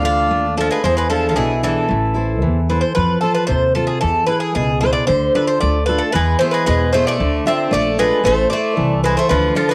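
A brooding Greek folk tune begins at once with the full bouzouki band: a lead bouzouki sits up front with a bright, metallic melody, its double strings ringing with some octave doubling and carrying a cassette-tape tint. Beneath it, a second bouzouki plays a lower line in the same picked, double-strung sound. It drops out at 2.7 seconds and returns at 6.2 seconds. A fingerpicked steel-string dreadnought guitar, full-bodied and also up front, fills in the accompaniment through the moody chord changes. A thumpy, woody upright bass with gut strings is plucked underneath in a duple metre with a straight feel. The short excerpt, cut from a longer piece, has the sound of a home cassette recording in a small room with moderate reverb.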